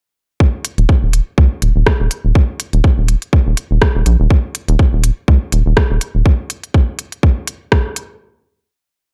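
Minimal techno at 123 BPM in 4/4, with a 56% swing on the sixteenths, this short whole piece feels clinical and sparse, running as a single groove from 0.4 to 8.2 seconds. An electronic kick drum enters first at 0.4 seconds, holding a tight, up-front four-on-the-floor pulse with a layered, tape-touched character. A garage drum kit follows with crisp programmed closed hats, a rim click and a backbeat, re-recorded in a large room and sitting lower in the mix than the kick. The rubbery square bass rolls through a bouncy staccato groove between Eb1 and Db2, its hollow, dark tone shaped by a filter pluck with a fast attack and sidechain pumping, before dropping out at 6.2 seconds. The production is dark overall, with little reverb.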